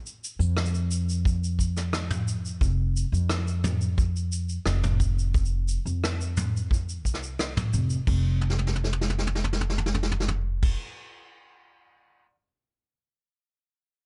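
This folktronica excerpt has a wistful, delicate mood in a straight 4/4 feel. A vintage brush drum kit opens at 0.1 s with rim click, shaker and toms, heard with dark cymbals, a medium-tuned snare and a punchy kick. An upright bass joins almost at once, played pizzicato on steel strings with a woody tone in its low register. A second vintage brush kit enters at 1.3 s with crash cymbal, kick drum, snare drum and toms, its top end rolled off. All three parts sit up front in a natural studio room with little reverb, giving a close, intimate sound. After the music moves into a new section, a drum fill carries the passage onward, and the bass stops at 10.7 s while the drums continue.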